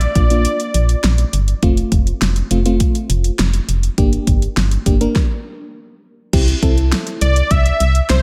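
A punchy, round FM bass sits up front in this bright, wistful synth-pop excerpt at 102 BPM in F major, driven by a layered deep house drum kit with a deep kick, fat snare and metallic hats. A dark, full-bodied FM electric piano with tremolo and a noise layer fills the middle, while a thick, detuned sawtooth unison lead with vibrato and tape echo appears briefly at the start and returns at 7.2 seconds. The chords move from Bb through F and Gm to C in a lightly reverberant room, with a stop at 5.2 seconds before the closing section.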